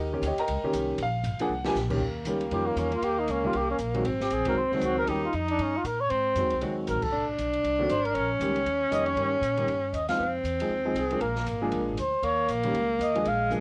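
This is small-group swing and bop jazz with a relaxed, sophisticated mood, heard in a short excerpt from a longer piece that has the close, dry sound of a home cassette recording. The concert grand piano, with its audible action noise and deep bass, and the woody, thumpy pizzicato upright bass are there from the start, joined by an open drum kit with dark cymbals and a boomy kick that plays a fill at 1.5 seconds. The breathy alto saxophone enters at 2.0 seconds with a punchy subtone second line and the dark, whispered trumpet carries the melody from 2.5 seconds, both using vibrato and scooped notes, while the band hits accents at 7.0 and 10.1 seconds.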